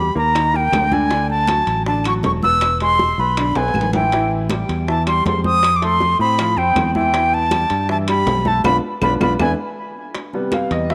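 A moderate plate reverb gives this fiery, danceable salsa excerpt a roomy glow, with an airy, reedy concert flute up front carrying the melody through a tape echo until 9.5 seconds. Beneath it, a clear, slightly detuned upright piano supplies woody, long-sustaining accompaniment, and a dark, round fingered electric bass anchors the low end. Ringing congas, metal-shelled timbales and dry claves sit in the background alongside very quiet, low-tuned bongos, with a drum fill at 3.6 seconds and a band accent at 8.6 seconds driving toward the cut.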